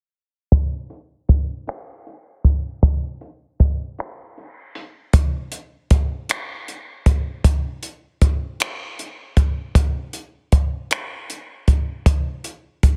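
The sound is dry and dense, heavily limited in a modern way and shaded by a low-pass filter that keeps the whole recording dark. This R&B excerpt moves at a slow 52 BPM in a straight 6/8, counted in dotted quarters, with a sultry, yearning mood. A compact cocktail drum kit carries the piece from 0.5 to 13.0 seconds, sitting up front with finger snaps, hi-hat and a punchy kick. The kit has an acoustic, small-room character, smooth and rolled-off at the top, and its snare carries a touch of soft clipping. A filter sweep shapes the opening passage until 5.1 seconds, when a second section begins and runs to the close of this cut from a longer piece.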